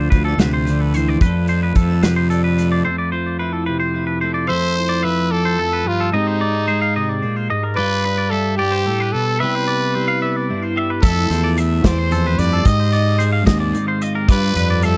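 A lilting 6/8 pulse carries this playful, bright fragment of math rock and midwest emo, cut from a longer piece. A chiming twelve-string electric guitar picks the accompaniment up front, while a twangy, clean electric guitar picks high arpeggios through tape echo. A loose indie drum kit with a tight kick, medium-tuned snare and hi-hat sits close and mellow, alongside a round, dark fuzz bass played with the fingers and pushed into overdrive; both drop out just before a break at 2.9 seconds, leaving the guitars alone. A raspy, growling trumpet takes the melody from 4.5 seconds with light vibrato and a punchy pop edge, sailing over lush extended chords. Drums and bass return at 11.0 seconds, and the whole take has the dry, intimate feel of a 1970s studio room.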